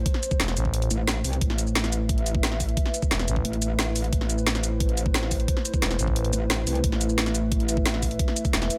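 A moody analog pad with a slow attack and a metallic, chorused wobble bass open this dark, tense excerpt of technical drum and bass at 177 BPM in A minor, both pumping against the sidechain over a single A minor chord. From 0.1 seconds a knocking, overdriven electronic kick joins an up-front kit with a woody snare, bright hi-hats and shaker, while a thick, growling FM bass cuts in for short bursts, first at 0.4 seconds. The saturated wobble bass drops out at 8.2 seconds, leaving the detuned, wave-folded pad and drums to carry on inside a digital ambience, with one last FM bass burst at 8.5 seconds.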